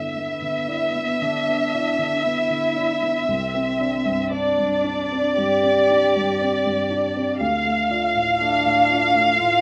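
Neoclassical piano and strings at a slow, rubato 58 BPM in 4/4, longing and fragile, where a veiled, con sordino chamber violin section carries the melody up front while a felt-muted upright piano with thick, mellow felt and plate reverb supplies intimate accompaniment, and a single muted cello with vibrato and a soft attack enters at 0.2 seconds with a second line, moving over G6, Csus2 and Dm in a rough home demo mix with a studio reverb, cut from a longer piece.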